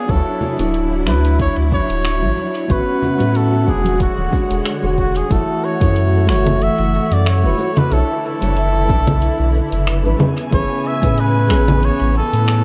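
The recording is steeped in echo, with a moderate spring reverb and lossy compression artefacts softening its edges. This wistful sunset chillout piece, cut from a longer work, moves at 92 BPM in F# minor with a gentle swing on the 16ths. A cup-muted trumpet carries the melody in a soft, veiled jazz voice with scooped notes, floating in analog delay and shimmer reverb. A fingerpicked nylon-string guitar accompanies through dub echo, its fresh strings and finger squeak audible. A woody, lush string section holds sustained chords with vibrato, bowed sul tasto, while a round sine sub bass sits up front. A punchy, layered electronic kick anchors a deep house kit of cabasa, congas, finger snaps and dark hi-hats, and a separate set of bright, thin-skinned congas plays in the background from 0.4 to 4.3 seconds; the harmony drifts from Dmaj9 to Amaj9, and the kick stops at 11.1 seconds.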